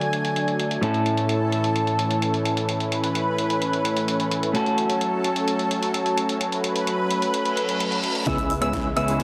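A lush, chorused unison pad sits up front in this euphoric, anthemic festival progressive house excerpt at 129 BPM in A major, holding bright sustained chords with a slow attack and sidechain pumping. Beneath it, a dark, clean semi-hollow electric guitar plays accompaniment through delay, while a big-room dance kit with a huge snare and metallic hats sounds muffled behind low-pass filters. The harmony moves from D to A and then F#m, and a reverse cymbal and riser enter at 7.5 seconds ahead of a drum fill. At 8.3 seconds the chord turns to C#m7 and the arrangement fills out: a thick, compressed supersaw riff, a catchy plucky lead playing arpeggios on a high E, a detuned saw bass in the background and a punchy electronic kick all join. Wet digital room reverb and a heavily squashed, radio-like sound round out the mix.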